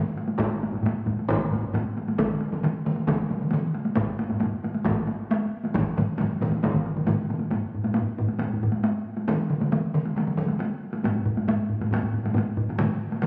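Hard-stick taiko drums open this driving, powerful Japanese traditional ensemble piece, compressed and saturated and placed up front. At 0.4 s they are joined by a close, dry heavy-stick group and a hard-stick group in a small room that drops out at 6.7 s, while from 2.2 s a distant heavy-stick ensemble sounds from a large room. The straight 4/4 pulse speeds up throughout under a wet scoring-stage reverb, all captured on a phone in the room.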